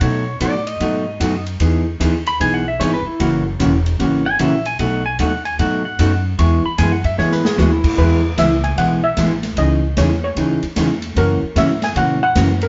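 A lilting swung-eighth shuffle in four drives this playful western swing excerpt, with a big-band drum kit keeping time on ride, hi-hat, punchy kick and a medium-tuned snare, airy and polished in the hall. Underneath, a pizzicato upright bass with gut strings gives a woody, thumpy low end, while a dark, up-front hollow-body jazz guitar picks clean accompaniment through B7, Emaj7 and F#7 changes. For the first eight seconds a bright, compressed pedal steel takes a fingerpicked slide solo full of volume swells. A drum fill at 7.2 seconds hands off to a new section at 8.0 seconds, where a shimmering lead steel pan struck with hard rubber sticks carries the melody over a C#madd9 turn. The band sounds live in one room with a wet studio reverb and a soft, rolled-off top end.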